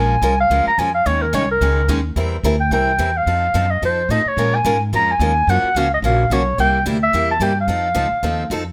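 Acoustic string swing in the jazz manouche tradition, this short cut from a longer piece moves at a brisk 217 BPM in Bb minor with a swinging, bittersweet mood. A mellow clarinet carries the melody up front, its subtone voice coloured by light vibrato and scooped notes for a vintage, jazz-style solo feel. Underneath, a picked steel-string acoustic guitar supplies the accompaniment with a bright, boxy parlour tone and fresh strings. A pizzicato upright bass sits prominently in the mix, woody, growly and thumpy. The harmony moves through Bbm7, Eb7sus4, C7 and F7, then returns to Bbm7 and turns to Gbmaj7 before closing on C7 and F7, all wrapped in light reverb across roughly 8.7 seconds.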